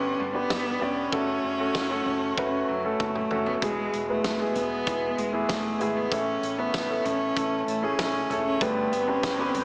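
A dreamy mix soaked in lush hall reverb, with a small-speaker sound, frames this warm, anthemic piano-driven pop passage cut from a longer piece. An intimate concert grand with audible action noise, deep lows and long sustain carries the accompaniment up front, while a clear, focused solo cello bows the melody with vibrato through tape echo, over a dark, round, foam-muted electric bass sitting in the background. A distant, roomy indie drum kit with a fat snare and punchy kick enters at 0.5 seconds and plays a fill at 3.0 seconds, and a very quiet electronic swell appears at 9.1 seconds.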